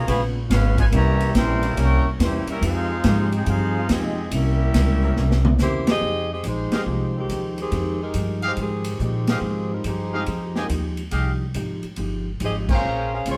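Brassy and sultry, this big band swing excerpt in F minor at 141 BPM opens with a clear trumpet section carrying the melody over a warm trombone second line, very quiet sustained saxophone chords, a woody, thumpy upright bass, a clean hollow-body jazz guitar in the background and a swinging drum kit with a punchy kick, then after a drum fill at 5.2 seconds a mellow, up-front saxophone section takes the melody from 5.6 seconds while a very quiet grand piano and tight trumpet stabs join at 6.7 seconds, all in a live room with wet studio reverb.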